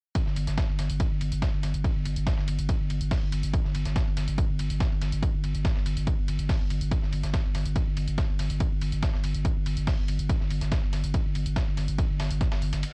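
Relentless and dark, this driving peak-time techno cut, taken from a longer piece, runs on a punchy, layered electronic kick and a deep, thick sine sub bass with overdrive and sidechain pumping, both sitting up front. Above them, a gritty, compressed sampler-style kit with soul dust supplies hi-hat, ride cymbal and a medium-tuned snare, its cymbals and hats filtered and pumping, while a dry, overdriven analog electronic hi-hat adds bite. A reverse cymbal sounds in the background at 12.9 seconds, and the whole has a small-room, home-cassette character with light reverb.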